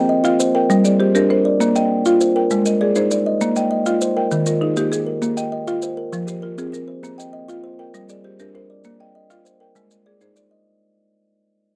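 A bright, ringing kalimba sits up front, its thumbnail-plucked arpeggios sounding alongside a buzzing marimba of dry hardwood bars struck with medium hard mallets, in a hypnotic, rippling southern African traditional piece built on an mbira-style interlocking cycle in Bb mixolydian. The 12/8 groove moves at 132 BPM in dotted quarters with a straight feel, grainy, mellow maracas enter at 0.2 s, and the chords move among Bb, Gm, Ab, Eb and Fm. The close 1970s-style studio sound carries light reverb, and this cut from a longer piece fades out across its full 10.7 seconds.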